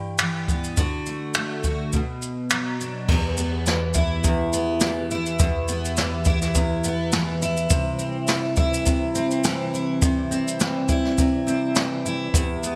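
A lightly swung 104 BPM groove in 4/4 sets this wistful, reflective acoustic pop excerpt in E minor, as an up-front brush drum kit with a boomy kick, dark cymbals, snare, shaker, finger snaps and crash enters at 0.2 seconds to join a double-tracked, full-bodied picked steel-string guitar that opens the excerpt. At 3.1 seconds a soft, flute-like tonewheel organ joins in the background with chorus vibrato, key click and a slow rotary speaker, holding sustained chords as the harmony moves from G6 through D and Bm to Em and C. Light reverb and studio ambience frame a bright 1980s-style digital production.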